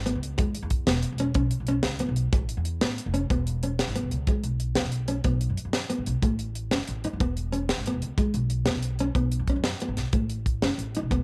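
Highlife guitar band groove in a straight 12/8 feel, danceable and carefree, cycling through E, B and A chords with a woody, growly pizzicato upright bass, a full-bodied fingerpicked nylon-string guitar with audible finger squeak, and a tight funk drum kit with a dry, high-tuned snare, all up front in a small room with cassette-tape colour on the guitar and drums, cut from a longer piece.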